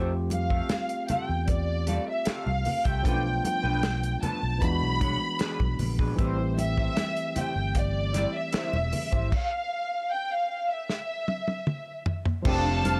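Lush 1970s-style soul in F major at 77 BPM, this romantic, smooth excerpt moves through Fmaj9, Bm7b5, E7 and Am7 before a stop at 9.3 seconds, where the chords drop out and a drum fill carries the band to an F6 at 12.5 seconds. A dark, woody violin section sings the melody up front with vibrato, over a bright, barky tine electric piano that is lightly overdriven through a combo amp. An electric guitar through a small old amp plays a twangy, slightly broken-up, lo-fi riff bathed in lush chorus, while a fingered electric bass adds a growly, amped low end. From 0.3 seconds, a dry soul drum kit with dark cymbals, a tight kick and a rolled-off top sits up front, joined by soft-handed congas in the background. A delicate, bell-like celesta enters very quietly at 6.6 seconds, and a veiled, con sordino string section adds a distant second line just at the close, all set in a small room ambience.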